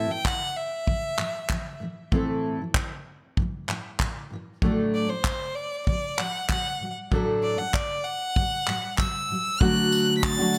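A straight 4/4 pulse at 96 BPM carries this easy-going, carefree acoustic pop piece, cut from a longer work. A modern studio drum kit comes in at 0.2 seconds with a punchy kick, handclaps and tambourine, its gated reverb giving the hits a tight, studio-room snap. Underneath, a double-tracked steel-string dreadnought guitar is fingerpicked up front, full-bodied and warm, moving from A minor to D over A and arriving on D at 9.6 seconds. Above it, a single bowed violin plays the melody close and smooth, its clear tone and even vibrato sitting high in the mix. Light reverb and a small room ambience frame a bright, 1980s-style digital production.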